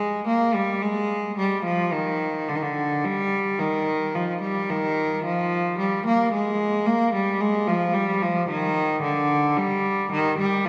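A single bowed cello carries this solemn, grave passage on its own, its gut-string tone nasal with a light vibrato in a period style. The music is a baroque-style suite movement for unaccompanied cello, moving at a slow 55 BPM in 3/4 with a flexible, rubato feel. The line moves between D3 and Bb3, and the player sits up front in the sound. A church reverb with a long 3.1-second decay surrounds the cello and gives the performance a spacious, resonant setting. Cut from a longer piece, the recording lasts 10.7 seconds and holds a single section throughout.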